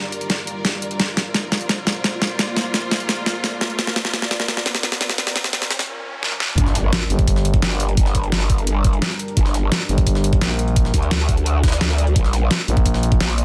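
A deep, moody pad and a distant, lush string section open this dark, tense drum and bass cut at 172 BPM in G minor, with an overdriven dubstep kit of bright hats and a deep snare rolling through a filtered build-up while a very quiet riser and impact rises beneath, until the strings drop out at 5.9 s and the drop lands at 6.6 s with a knocking electronic kick, a gritty, pitched-up jungle kit tucked far back, an aggressive wobbling growl bass up front, and a thick FM growl bass that appears briefly before returning at 9.9 s, all packed into a dense, heavily limited master.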